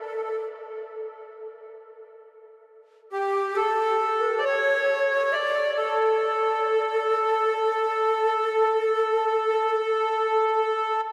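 Drenched in a huge, dreamy reverb with a 7.5-second tail, this melancholic, longing excerpt of an Arabic maqam ensemble in A hijaz drifts in free time, as an up-front, reedy accordion with a slow beating shimmer carries the melody while a breathy, end-blown ney adds an expressive second line of tongued, vibrato-laden phrases, both parts trailed by a diffuse ambient delay.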